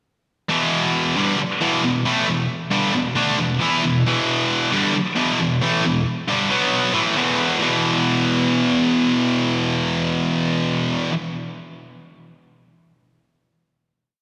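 Swaggering and anthemic, this short rock piece at 135 BPM in straight 4/4 features a lone double-tracked, high-gain electric guitar, bright and up front with distortion and delay, whose picked power-chord riff moves from E5 to B5 and back before a final chord rings from 7.6 seconds into a lush hall reverb with a glossy 1980s-style digital sheen.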